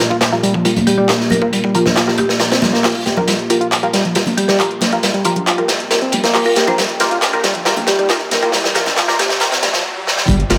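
Crunchy, gritty breakbeat drums at 137 BPM drive this funky, energetic breaks excerpt in G minor pentatonic, layered with background house handclaps and bright hats, ringing hard-hand congas, a reedy overdriven electric piano riff through a combo amp, muted phaser-tinged dub chord stabs, a woody buzzing marimba melody with telephone sound and delay, and a dark sidechain-pumping ambient pad under a filter sweep, building with a drum fill and a very quiet riser to a stop at 9.9 seconds before a thick saturated sub bass lands at 10.3 seconds.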